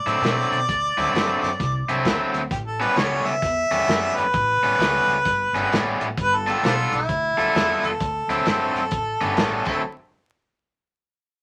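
Soulful and rollicking, this electric blues shuffle moves at 131 BPM in 4/4 with a loose swing on the eighth notes, cut from a longer piece. A warm harmonica carries the solo melody up front, jazz-styled with light vibrato, tongue slaps and scooped notes, its tone roomy and slightly distant. Beside it, a bright, overdriven electric guitar plays a picked, compressed riff, while an upright bass supplies a woody, dark pizzicato line on steel strings, sitting lower in the mix. A soul drum kit with dark cymbals, a medium-tuned snare and a tight kick drives the groove with hi-hat and crash, sounding mid-forward in a small room. The harmony moves through D9, A9 and G9 over a moderate studio ambience dusted with vinyl crackle, and the band breaks off at 9.8 seconds.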